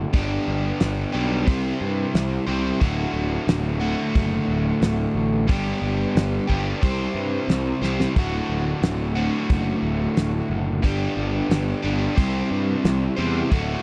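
A straight 4/4 groove at 90 BPM drives this sunny classic rock excerpt in D mixolydian. A damped 70s drum kit with a fat snare, tight kick and hi-hat sits up front and adds a short fill at 7.8 s, while a double-tracked, compressed and overdriven electric guitar plays a riff over G, C and D, underpinned by a bright, growly fuzz bass. The dry, close 1970s-style studio sound has little reverb, giving the whole part an immediate, punchy presence.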